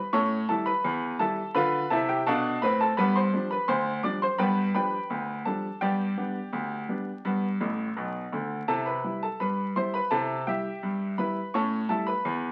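A straight 2/4 pulse at 84 BPM carries this jaunty, playful ragtime fragment, cut from a longer piece. A clear baby grand piano plays solo throughout, ranging from A1 to D6, with a short sustain and an up-front placement. The harmony moves through A7, Dm, G7 and G before settling on C at 8.7 seconds, then turns back to A7 near the end. A brief piano fill from 7.6 to 8.7 seconds leads into that C chord. The sound has the character of a very old 78 rpm record, with vinyl crackle and a wet studio reverb around the piano, tuned slightly sharp to A4 = 441 Hz.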